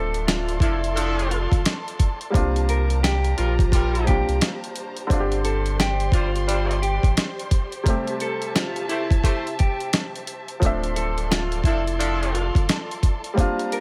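Swung sixteenths at 87 BPM in 4/4 drive this moody, reflective boom-bap hip-hop excerpt in D minor, where a gritty, compressed sampler-style drum kit with a thumpy kick sits up front beside a deep, round sine sub bass. A woody upright piano colored by cassette tape comps under a dark, clean, fingered electric guitar melody treated with lush chorus and tape echo, while bowed studio strings add smooth, expressive sustained chords with vibrato and portamento. From 0.6 s, a distant horn section with light vibrato and tape echo punctuates the Dm7 to C7sus4, Gsus4 and Am7 changes with stabs, all set in a small room ambience.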